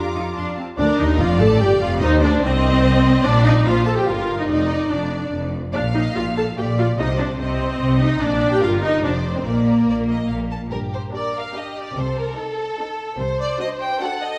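An up-front, smooth viola section carries the accompaniment in this cheerful, lively excerpt from a quick classical-period movement for string orchestra, played at 146 BPM in 3/4, beginning in Bb major and turning to G minor at 10.7 s. Above it, a distant violin section sings the intense melody with vibrato while a second violin section adds an expressive line with soft attacks and portamento. Focused cellos and double basses hold the bass until 13.5 s, all set in a moderate scoring-stage reverb with a faint mains hum underneath.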